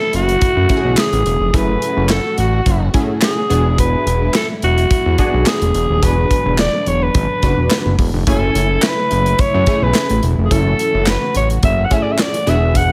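A straight 4/4 early-eighties boogie funk groove drives this danceable excerpt, with a fat, detuned analog bass and a punchy kick, hi-hat, medium-tuned snare and handclaps from a modern drum kit with gated reverb sitting up front, while a dry group handclap joins in the background at 1.0 seconds. A funky polysynth comp with chorus, a filter sweep and a moving notch enters at 0.7 seconds, and a dark, woody string section holds lush sustained chords beneath it. Over the top, a raspy, growling alto saxophone with breathy vibrato and slapback echo carries the melody as the harmony shifts from F#m7 to E9 at 3.5 seconds and back.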